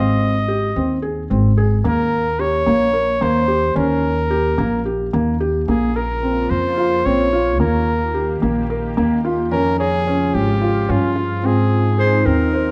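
A clear, close-miked flugelhorn carries the melody up front in this restless, shimmering contemporary chamber piece in 7/8, over soft felt-muted upright piano arpeggios and a woody pizzicato upright bass, while an evolving, warbling wavetable pad with chorus and its own reverb enters with sustained chords at 6.1 s and a classical-style clarinet adds a brief second line at 12.0 s, inside a dark recital-hall ambience.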